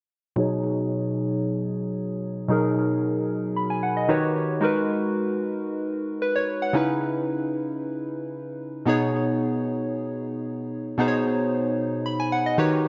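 The recording sounds dark and echo-heavy, its top end rolled off around 7.5 kHz and set in light reverb with a digital sense of ambience. This is a short amapiano fragment with a soulful, warm mood in a straight four-beat feel, lifted from a longer piece. A single part of analog keys carries the whole passage alone, sitting up front with a round, detuned tone that blends square, sawtooth and triangle waves with a wave-folded edge. Its notes strike with a fast attack and then decay, thickened by chorus and trailed by analog delay under a low-pass filter. A filter sweep runs across the keys through the opening stretch, moving through rich extended chords such as B69, D#7alt, G#m9 and C#m9. At 8.9 seconds the music drops into a new section that returns to B69 and carries through to the close at 12.9 seconds.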